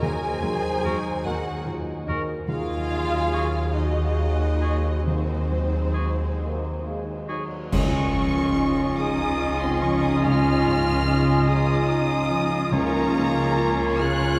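A wet cathedral reverb wraps this tender, moving cinematic score in Db major, where a distant, lush violin section carries the melody at a rubato 44-49 BPM in 6/8, supported by a rich, close second violin line, a pure, mellow flute section, a clear oboe and a clear clarinet entering near 0.8 seconds. Beneath them, a dark baby grand piano with audible action noise, a smooth viola section, soft-attack French horn chords, a ringing fingerpicked harp, and a very quiet cello section with double basses fill out the harmony from Ebm to Dbadd9 and Bbm7/Db. A cymbal swell with dark clash cymbals and concert bass drum arrives at 5.1 seconds, building to an ensemble accent at 7.7 seconds, with very quiet calf-headed timpani strokes at 7.7 and 12.7 seconds in this excerpt from a longer piece.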